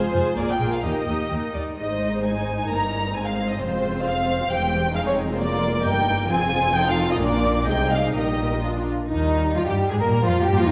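Muted violins lead this lively, cheerful classical-period movement for string orchestra: the first section carries the melody up front, while the second violins play a close supporting line, both dark and veiled with vibrato. Con sordino violas sit distant in the accompaniment, a lush cello section with a soft attack lies in the background, and a close double bass section anchors the low end, all bowed in a flexible, rubato 2/4 and bathed in a concert hall's long reverb. Cut from a longer piece, the passage returns to its opening material at about 9.1 seconds.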